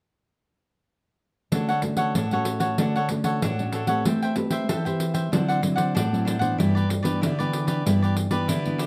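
Joyful and festive, this short cut from a longer samba and choro piece in D major moves at 95 BPM in a straight 4/4, with a full-bodied, fingerpicked nylon-string guitar carrying the louder accompaniment alongside a bright, crisp cavaquinho, both up front, over a jingly pandeiro in a small-room sound, all three entering at 1.5 seconds and passing through Dmaj7, Am9, D9 and G6 under light reverb with close, detailed miking that catches the guitar's finger squeak.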